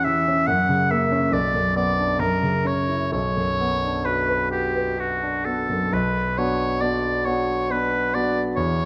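A smooth-topped, clear oboe sings a lyrical B minor melody up front over a concert grand piano's deep-bassed, long-sustaining accompaniment in this romantic classical duo at 67 BPM in 3/4, its uneven rubato beats moving through F#, Bm, F#7 and Bm within a wet recital hall reverb, in an 8.9-second passage cut from a longer piece.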